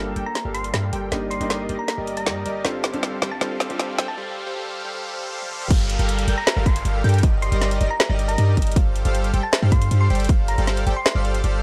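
Future bass in G minor at 157 BPM with a half-time feel, bittersweet and lush, where a muted felt piano with dub echo sits beneath a fat, detuned sawtooth polysynth riff carrying 12-bit grit and a filter sweep, alongside a boomy 808-style bass, a round, tine-like thumb-piano-like pluck melody with digital delay, a trap kit with woody snare and metallic hats, and background risers and downlifters building through a break at 4.2 seconds to a drop at 5.7 seconds, where a hard-clipped electronic kick arrives up front and an airy, dreamy lead adds soft arpeggios as the pumping synths and bass breathe under light reverb.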